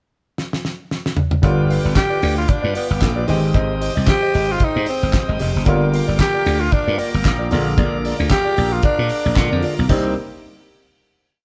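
Disco with a driving, sultry mood, played by a band live in one stone room with moderate reverb. A damped 70s drum kit opens with a fill before settling into a four-on-the-floor beat, open hi-hats on the off-beats and the fat snare layered with handclaps, a tight kick up front. At 1.4 seconds bass, guitar, piano and organ enter: a punchy, growly slap bass drives a syncopated line with muted ghost notes and chromatic approach notes, while a dark, clean electric guitar chops sixteenth notes in the background. A clear, slightly worn concert grand piano holds short-sustained chords in drop-2 voicings with grace notes, and a reedy tonewheel organ, lightly overdriven with key click and a slow rotary speaker, lays down a sustained pad behind them. From 2.0 seconds a raspy tenor saxophone takes the lead up front, spinning jazz-style motif-based phrases with light vibrato over the changes from G7 through Abmaj7, Gm7 and Bb7, before the piece closes on a final Cm7 chord.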